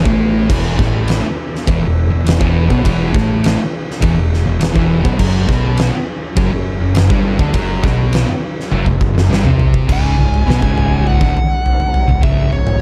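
A dark, lightly reverberant production frames this brooding, ominous stoner and doom metal excerpt at 102 BPM in C# minor, where an up-front, oversized low-tuned drum kit with a boomy kick, fat snare and dark cymbals drives two thick fuzz guitar riffs in the background, a round, overdriven fuzz bass and a very quiet, vintage string machine holding mellow sustained viola chords, until a drum fill at 8.7 seconds leads into a fuzz lead guitar melody with analog delay at 9.9 seconds.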